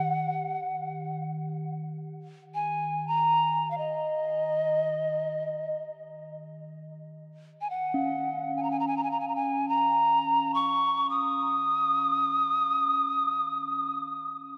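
This is meditative world music in free time, a short cut from a longer piece in E-flat minor with a haunting, contemplative mood. A mellow, polished pan flute carries the melody from the start, sitting up front with a pure, woody tone, soft attacks and expressive vibrato, while a diffuse ambient delay trails behind its lines. Beneath it, a bronze singing bowl struck with a wooden striker supplies a quieter metallic ring whose slow beating hums through a boxy, small-room character. The flute's phrase is stated twice, with the second statement beginning at 6.9 seconds, and the flute falls silent at 14.3 seconds as the bowl rings on to 14.6 seconds. A wet church reverb and a dark production give the piece a spacious, enveloping glow.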